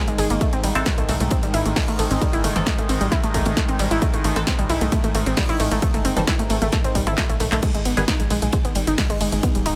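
Lightly reverberant with a digital ambience, this relentless, intense slice of driving peak-time techno, cut from a longer piece, runs at 133 BPM in a straight 4/4. A heavy, tape-warm electronic kick anchors a layered techno kit with a punchy snare, handclaps, toms and pumping hats and cymbals, while a very quiet big-room acoustic kit adds a fat snare underneath and a drum fill arrives at 7.2 seconds. A tight, detuned sawtooth sequencer bass and a warbling, lo-fi dusty pluck riff soaked in tape echo pump against a vintage pulse-width drone in the background, and a muted, phased dub chord stab sits very quietly in the mix from 0.8 to 8.0 seconds as the harmony moves from A minor to G-sharp minor.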